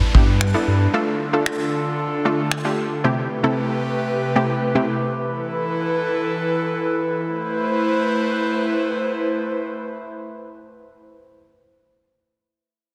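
An airy, breathy pad leads this bittersweet, driving dance-pop fragment in A minor at 114 BPM, holding sustained chords with chorus and a sidechain pump throughout. Alongside it, a lush, detuned unison pluck adds pumping accompaniment until 5.0 s. A glossy, chorused synth bass sounds a brief G2, and an electronic downlifter sits in the background over the opening. Up front, a vintage brush drum kit gives finger snaps and a punchy kick, with soft clipping on the snare, before dropping out at 2.6 s. The harmony moves from G6 through Dm, Am7/C and Esus4, then settles on Amadd9 as a new section begins at 7.3 s. A wet hall reverb blends with a small room sound, all pressed into a dense, heavily limited modern master.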